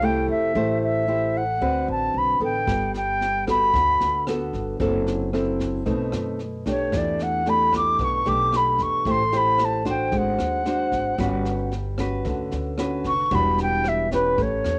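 A straight, easy bossa nova pulse carries this sunny, romantic fragment of a longer piece, with an airy, vibrato-laden silver flute taking the melody throughout, bathed in plate reverb and a cassette tape tint. Up front, a small-sounding, fingerpicked nylon-string guitar, also cassette-colored, moves through lush jazz chords like Fmaj9, B7b9 and Gmaj7#11, while a woody, thumpy pizzicato upright bass on gut strings anchors the harmony. At 2.7 seconds, a brushed drum kit joins in a small room with boomy kick, rim clicks and snare, lending the whole home-cassette recording an intimate, lightly reverberant glow.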